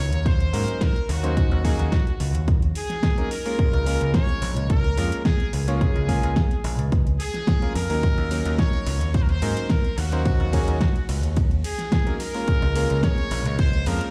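A straight 4/4 groove at 108 BPM drives this groovy, sleek nu-disco excerpt in Eb dorian, with a punchy, overdriven electronic kick sitting up front and a pop drum kit of fat snare, metallic hi-hats and ride cymbal, also overdriven and layered. A bright, picked electric bass holds the low end from Bb1 to Ab2, sounding direct and forward in the mix. A clear electric grand piano with a vintage character and clangy low register carries the accompaniment through a tape echo. On top, a brilliant trumpet section plays the melody between Gb4 and Db5 with light vibrato and a present, pop-style ensemble tone, trailed by digital delay. The harmony alternates between Ebm7 and Db6 across the roughly 14 seconds, and the mix carries little reverb on the parts while the whole sounds played back on a big system in a bare room.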